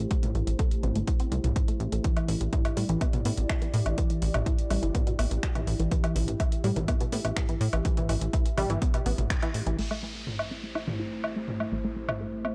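A straight 4/4 pulse at 124 BPM drives this driving, dramatic melodic techno in A minor, with a punchy, up-front electronic kick and a techno kit of metallic hi-hats, toms, finger snaps, woodblock and crash cymbal, its hats, toms, percussion and cymbals pumping against the sidechain. A plucky sawtooth-and-square analog bass with a fast, decaying attack sits beneath a tight, detuned sequenced synth whose mellow chorused arpeggios carry a filter sweep and analog delay, while a deep, moody pad holds slow-attack sustained chords over Am7 and Em7, both also pumping. A band accent lands at 9.3 seconds, the kick drops out at 9.4 seconds, and from 9.8 seconds an electronic downlifter falls through a return to Am7, the whole cut captured as a dry, gritty hardware recording taken from a longer piece.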